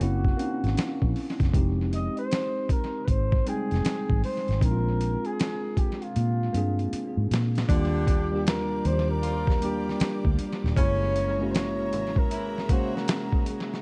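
A mellow, distant flugelhorn with vibrato and scooped notes carries the melody through tape echo over a worn tine electric piano, a round, foam-muted electric bass and a gritty, pitched-down boom bap sampler-style drum kit with a thumpy kick, before lush bowed strings and clear saxophone stabs join at 7.7 seconds in this smooth, soulful neo-soul R&B groove with an echo-heavy mix.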